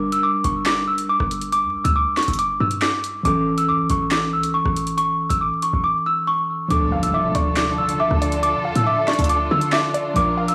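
A half-time drill groove of sharp snare, handclaps, rim clicks and warm hi-hats drives this menacing, cold hip hop fragment, with a punchy, tight 808-style bass and a worn, slightly out-of-tune electric piano underneath a bell-like, close-miked celesta melody trailed by tape echo. After a silent gap from 5.8 to 6.7 seconds, a background impact lands as veiled, con sordino strings and a warbling, lo-fi pluck with chorus and tape echo join the mix. The whole recording sounds blown-out and overdriven, with vinyl crackle and small room ambience.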